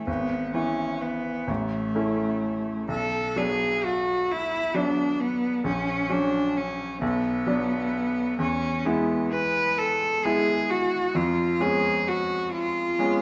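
A rich, intense bowed cello sings the melody up front with vibrato and a smooth top, while a bright, polished grand piano with short sustain accompanies it throughout this serene, lyrical romantic classical duo, cut from a longer piece. The music moves at a slow, rubato 43 BPM in 6/8, counted in dotted quarters, and is tuned slightly low to A4 = 437 Hz. Harmonies pass from E/G# through A, Bm, F#/A# and Bm again to E and C#7/E#, all set in a stone room's reverberant ambience.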